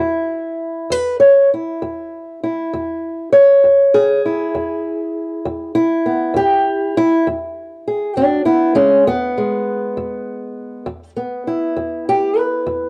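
This excerpt rolls along in a slow, straight 12/8 feel, counted in dotted quarters, giving an acoustic country blues a swaggering, rollicking gait. A lone fingerpicked, ladder-braced acoustic guitar carries the whole recording, reaching from low E2 up to C#5 and sitting up front. Its tone is dark, woody and boxy, with the dull ring of old strings and the softened grain of cassette tape. Light reverb and a small room ambience surround it, giving the feel of a home recording. After an opening passage, the second section at 7.3 seconds turns into a solo stretch on the steel strings that runs to the cut at 12.9 seconds.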